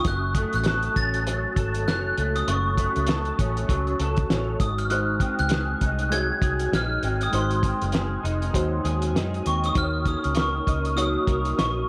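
A 99 BPM groove in 4/4, swung on the sixteenths, rides on a cloth-damped drum kit whose thuddy kick, fat snare and hi-hat sound muffled, gritty and up front, with a rolled-off top. This nostalgic, sunny bit of indie bedroom pop is cut from a longer piece and moves through Gbm, Ab7 and Ebm7. A vintage muted fingered bass sits underneath, dark, round and punchy. An electric guitar through a small old amp plays a slightly broken-up, compressed, picked accompaniment, treated with ensemble chorus, vibrato and plate reverb. Up front, a glockenspiel struck with hard plastic mallets carries the melody in a metallic, bell-like ring, shimmering through chorus, plate reverb and analog delay. At 4.9 seconds a reedy, worn electric piano joins, slightly out of tune and heard through its built-in speakers with a cassette-tape tint, adding to the homespun feel under a light wash of room reverb.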